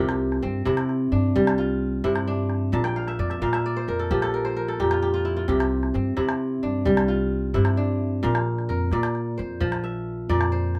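Lightly reverberant, this hypnotic, flowing West African string and xylophone piece in C mixolydian moves at 87 BPM in a straight 12/8, with an up-front, crisp, ringing fingerpicked kora spinning arpeggios over alternating C and Bb chords and adding a fill from 2.7 to 5.5 seconds, while a woody pizzicato upright bass anchors the low end and a small, band-limited, vintage-sounding calabash keeps time.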